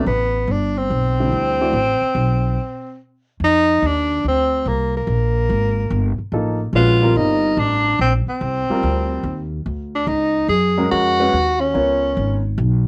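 A home recording on cassette with moderate studio reverb frames this hypnotic, open swing jazz excerpt at 144 BPM, moving through suspended chords from D13sus4 to F9sus4 and Db9sus4, with a stop from 2.6 to 3.4 seconds. Up front, a tenor saxophone carries the melody with a soft attack, light vibrato and a smooth top, and its tape coloring is shared by a natural-sounding baby grand piano that comps briefly at the opening and returns at 6.3 seconds. Underneath, a woody, thumpy pizzicato upright bass on gut strings sits close and runs to 12.9 seconds, just past the other parts.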